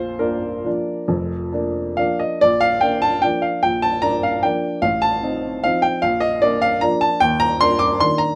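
A graceful, sparkling classical piano waltz in 3/4 and B-flat major, taken from a longer piece, where a solo upright piano with a woody, polished tone and short sustain sits up front in a dark production with light reverb, moving with rubato at roughly 131-160 BPM and shifting to a new section at 2.4 seconds as the harmony passes from Bb through F7/A back to Bb before closing on Eb5.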